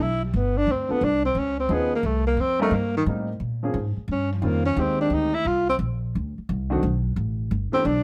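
A breathy tenor saxophone and a woody, pizzicato upright bass open this brief jazz fragment together, swinging at a brisk 176 BPM in 4/4 with a playful, relaxed mood. The saxophone carries the melody as a solo throughout, its dark, whispered subtone marked by vibrato, soft attacks, scooped notes and a smooth top that sit intimately up front. Beneath it the bass holds the low end with a thumpy, steel-strung sound, also close and present. A warm baby grand piano enters at 0.9 seconds to comp underneath, set lower in the mix, its long sustain and audible action noise giving it a natural, close-up character. The harmony drifts through colourful jazz changes such as Dm7, Bbm9, Eb13 and Abmaj9 before settling on G69, all framed by a light reverb as the passage cuts off mid-piece at 8.0 seconds.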